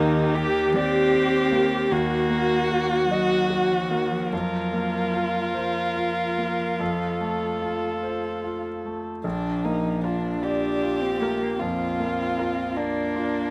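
In a 12/8 at a slow 48-52 BPM counted in dotted quarters, with free rubato, this slow romantic movement for piano quartet in Bb major unfolds with a serene, lyrical calm. The violin carries the melody up front with a dark, woody tone, sul tasto bowing and vibrato, while the cello sings a second line beneath it, intimate and close, with a soft attack and a smooth top. A bright, brilliant concert grand piano supports them from deep bass up to the treble with polished, present accompaniment, and the viola adds its own airy, sul tasto accompaniment with light vibrato until it drops out at 12.7 s. The harmony moves from Ebmaj7 through Ebm and a suspended F before settling on Bb. Close, detailed microphones and a light reverb capture this brief passage, which is taken from a longer piece.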